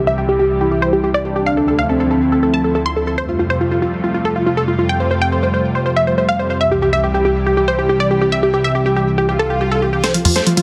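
Uplifting trance in F major at 140 BPM, this euphoric excerpt opens on a lush, detuned unison pad holding sustained chords under an up-front, punchy sawtooth pluck melody, shadowed by a bright, catchy unison lead set in the background with cassette-tape echo. A velvety, mellow synth lead with chorus and vibrato adds a second line only until 3.1 s, while the harmony moves from C through Dmadd9 and Fadd9. An electronic swell and riser enters at 9.3 s and builds into a drum fill at 10.0 s, where a big-room kit with a huge, up-front snare arrives, followed by a short detuned pluck arpeggio at 10.1 s and a tight, nasal sequencer bass at 10.3 s, all under light reverb and a dense, heavily limited modern master.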